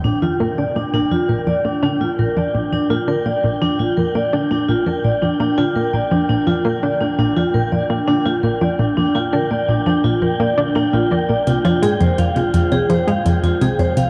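Bathed in a huge, wet reverb and the warbling pitch drift of worn cassette tape, this hypnotic, cosmic fragment of sequencer-driven space music at 84 BPM pairs up-front, metallic vibraphone arpeggios with tape echo and a round analog pluck riff in chorus and tape echo, with a synth filter sweep running throughout, over an airy, wind-like tuned noise texture held on G5, while an electronic hi-hat and woodblock enter in the background at 11.5 seconds as the harmony moves from Bb to Fm.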